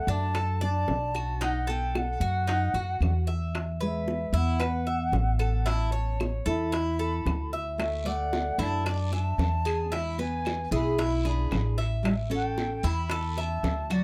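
Close, detailed microphones and a light reverb give this short cut from a longer Cuban son and guajira piece a warm, sunny character in a straight four-four feel. A mellow, airy jazz flute carries the melody from a distant place in the mix, its tongued, expressive phrasing coloured by vibrato and a plate reverb. Beneath it, a fingerpicked classical nylon-string guitar plays a bright second line, while a picked Cuban tres adds metallic arpeggios from its doubled strings. The upright bass sits up front with a dark, thumpy pizzicato tone, and round, low-tuned bongos struck with hard hands sound compressed and saturated. Woody claves tap along dry in the background, and at 7.8 seconds a raspy, vintage-sounding guiro joins them quietly behind the band.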